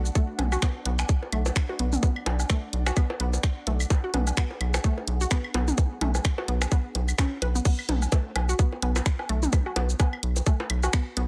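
Minimal techno at 128 BPM in B dorian with a 16th-note swing, clinical and sparse in mood, built on a tight, overdriven electronic kick drum up front and a rubbery, nasal square bass that pumps against it. An overdriven garage drum kit of crash cymbal, finger snaps, hi-hat and shaker, plus tape-echoed electronic toms, bongos and woodblock, surround a juicy, squelchy blip pluck riff treated with chorus, tape echo and sidechain pumping. A very quiet bubbling stepped-filter texture and an ethereal, airy pad float in the background until both drop out at 7.7 s, when the drop moves from B minor to a B5 chord in a dry mix with little reverb.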